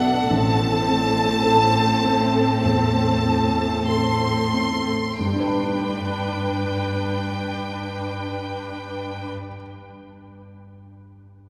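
A bright, up-front violin section carries the melody in this hopeful, uplifting cinematic passage, its vibrato-rich line sitting high and intense over a lush orchestral bed. Beneath it, a viola section adds expressive, portamento-tinged inner harmony, while a focused cello section holds the bass. A concert harp rings out arpeggios from the background, and a felt-muted upright piano lends a soft, dark, vintage-toned accompaniment. The rubato feel slows through the opening, with an A minor colour giving way to G at 5.2 seconds. The strings stop at 9.3 seconds, the harp shortly after, and the mellow piano continues alone until 11.5 seconds. The whole ensemble sits in a cathedral-like reverb that gives the recording a spacious, wet sense of a church or concert hall, and it is cut from a longer piece.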